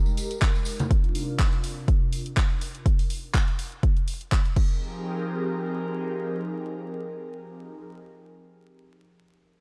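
Deep house at 123 BPM in F minor, with a warm, late-night mood and a lightly swung 16th feel, heard in a short excerpt cut from a longer piece. An airy, breathy pad with a detuned sawtooth-and-noise character, chorus, phaser and sidechain pumping holds sustained chords from Fm11 to Cm11 and back across the whole 7.8 seconds, with a filter sweep moving over it during the first 2.9 seconds. A punchy, up-front electronic kick and a layered kit of crash, handclaps and hi-hat drive until 4.7 seconds, dotted with a brief jingly tambourine and a ringing, hard-handed conga hit, all under light reverb and vinyl crackle.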